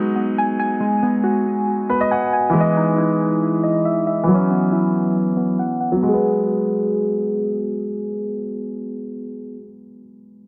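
A half-time 4/4 pulse gives this dark, hard-hitting hip hop fragment its heavy sway. Muted, felt-like synth keys play intimate arpeggios up front, their soft triangle-and-sawtooth tone roughened by a noise layer and ring modulation, with chorus, digital delay and a filter sweep through the first 6.0 seconds. A brilliant concert grand piano with deep bass supplies accompaniment over G#m7, Emaj7 and F#7sus4, all inside light reverb and a dense, heavily limited modern master; the keys stop at 9.7 seconds, leaving the piano alone until 10.5 seconds.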